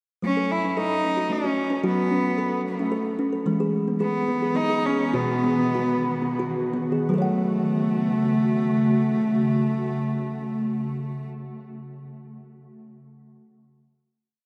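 A rich, nasal cello sings short call phrases through a diffuse ambient delay from 0.2 s over a woody, fingertip-plucked kalimba ostinato with sustained bass notes, opening a gentle, hypnotic world meditation in 3/4 and F# dorian at 82-112 BPM that slows, gathers an ethereal, detuned pad with ensemble chorus at 4.5 s, and comes to rest on a final F# minor chord at 7.1 s in a vast, echoing cathedral space.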